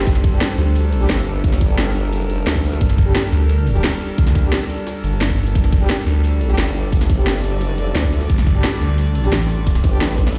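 A thick, swirling phased saw bass sits up front in this aggressive, futuristic dark technical drum and bass excerpt, joined by a chorused formant-sweep wobble bass that drops out between 2.8 and 6.6 seconds, a tight, tape-warm electronic kick, cracking snare and crisp hats, a very quiet gritty jungle sampler-style kit, background brass stabs with delay and an eerie metallic drone pumping under sidechain, all played through a big sound system in a bare room with large studio reverb.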